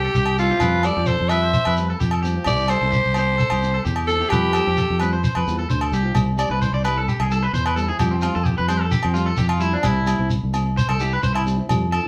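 Over a straight, carefree 4/4 highlife groove set by ringing agogo bells, grainy shekere and an up-front fingered electric bass, a raspy, punchy alto saxophone carries the melody with light vibrato until 5.0 seconds, while a bright, twangy electric guitar at the edge of break-up plays arpeggios and a fingerpicked steel-string acoustic guitar sits in the background, before a clean electric guitar solo takes over from 6.2 seconds in this live-band excerpt with wet studio reverb.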